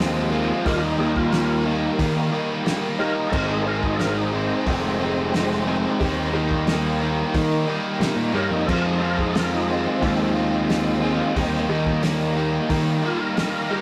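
A rough rehearsal-room recording with warm saturation and light reverb frames this driving, swaggering classic rock passage, cut from a longer piece and moving over Fm, Eb and Ab chords in a straight 4/4 feel. Up front, a punchy fuzz-laden picked bass pushes the groove alongside a cloth-damped, thuddy drum kit with dark cymbals, a fat snare and a tight kick. A biting overdriven guitar, a very quiet double-tracked overdriven guitar and a bright, distorted guitar in the background play riffs, while a gritty tonewheel organ carries the melody through a slow rotary speaker with key click, joined by a faint warbling organ-string ensemble holding chords and a jangly, detuned honky-tonk upright piano entering at 0.3 seconds.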